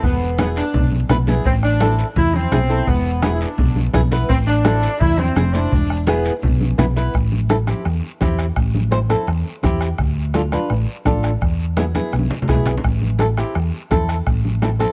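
Passionate and danceable, this straight-feel cumbia excerpt at 168 BPM settles into A minor from 7.1 s, with a mellow, vibrato-laden saxophone section carrying the melody up front until 6.1 s over fingerpicked flamenco guitar, a dark, round, punchy hollow-body electric bass, a softly beaten bombo, ringing background congas and a raspy guiro, all in a mix with little reverb and a drum fill at 11.9 s.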